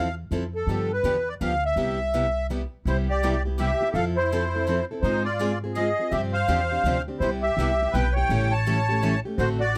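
Close, detailed and nearly dry, this lively, swinging slice of acoustic string swing in three sets a sweet, reedy accordion melody with light tremolo tuning over two boxy, parlour-style picked steel-string guitars, one plugged-in and warm, the other bright with fresh strings and finger squeak, and a growly, woody pizzicato upright bass up front, while a shimmering musette accordion adds a second line from 2.9 seconds.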